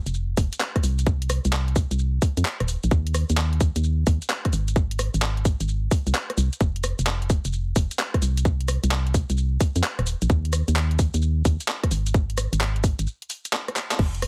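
UK garage in a two-step groove at 130 BPM, this soulful, moody excerpt runs as a drop with 16th-note swing, built on a dark, hollow, organ-like FM bass with a fast attack and tube saturation, playing from Eb1 to F2. A tight, overdriven electronic kick sits up front beside a layered garage kit of crash, handclaps, hi-hat, rim click and shaker, both carrying overdrive and small room ambience. The dry, heavily compressed radio-style sound stays close until a break at 13.1 seconds, a drum fill at 13.8 and a band accent at 13.9.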